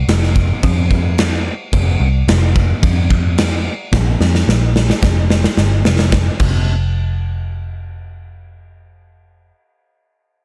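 This is a rock piece drawn from shoegaze and dream pop, a short cut from a longer work with a blissful yet wistful mood and a straight four-beat feel. A vintage muted, picked electric bass holds the low end throughout, its foam-muted tone dark, round and punchy through an amp. A gated 80s acoustic drum kit sits up front, with a punchy kick, a medium-tuned snare, bright crash cymbals and the clipped ambience of a stone room. The drums play a fill from 3.9 to 6.1 seconds, the music moves into a new section at 6.1 seconds, and the drums then drop out at 6.6 seconds, leaving the bass to carry on. The production is dark and dry, with little reverb.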